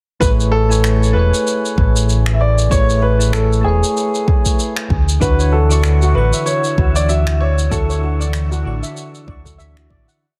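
Sunny and smooth, this sunset chillout piece in A major moves at 96 BPM with a swung 16th-note lounge groove, where a deep, soft electronic kick and light electronic shaker and finger snaps (with soft clipping on the snare) sit under a dark, round, up-front fingered electric bass playing a dub-style line. A warm concert grand piano carries a motif-based melody with long sustain and delay, while mellow electric-piano-like synth keys add held, spread chords with syncopated pushes, coloured by chorus, tremolo and digital delay, as the harmony shifts from Amaj9 to Dmaj9. A metallic, shimmering steel pan joins in the background with delayed arpeggios at 5.2 seconds, followed by a breathy, very quiet pad at 5.6 seconds and a faint wind-like tuned noise texture on a held high note, all under light reverb and a dense, heavily limited master as the piece fades out from 6.9 seconds.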